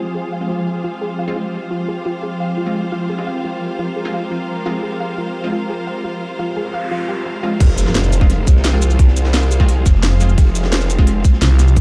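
Driving straight 4/4 beats from a tight, up-front electronic kick, a drum and bass kit with cracking snare and crisp hats, and a very quiet, gritty breakbeat kit arrive at 7.6 seconds in this tense, futuristic dark technical drum and bass excerpt, dropping together with a snarling, wobbling growl bass and a thick FM growl bass that joins at 9.9 seconds, all after an opening built from a swarming granular drone, bold orchestra-hit-like synth stabs, lush vibrato strings and a soft, round pluck arpeggio whose filter sweep is capped by a noise sweep and impact.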